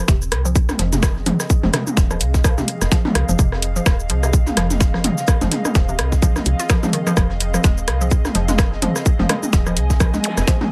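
A tight, up-front electronic kick anchors this cool, hypnotic minimal techno excerpt at 127 BPM in F minor, swung on the sixteenths and resting on a single Fm7 chord. It is joined by a booming analog drum machine with metallic hats, snaps and shaker, a click kit of rim clicks and toms with digital delay, and a very quiet, dark brush kit tucked beneath. A woody, round FM bass pumps against the kick alongside a hollow, bouncy square-wave pluck riff that warbles through chorus and delay, while an airy, breathy pad with a nasal, detuned edge hovers softly above. The sound stays close and dry, and a very quiet electronic zap flickers in at 10.2 seconds just before the cut.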